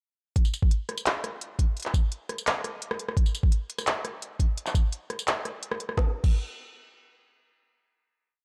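Heavy and spacious, this short drum and bass piece moves at 171 BPM in 4/4 with a half-time feel, set in a dark, dry production. A knocking electronic kick sits up front alongside a sparse half-time kit of woody snare, crisp hats, rim clicks, handclaps, tambourine and crash, the kit carrying a tape-warm tone and the air of being re-recorded in a small room. Both parts drive a drop from 0.4 to 6.0 seconds, and they stop at 6.3 seconds as a final hit carries the piece to its close at 8.4 seconds.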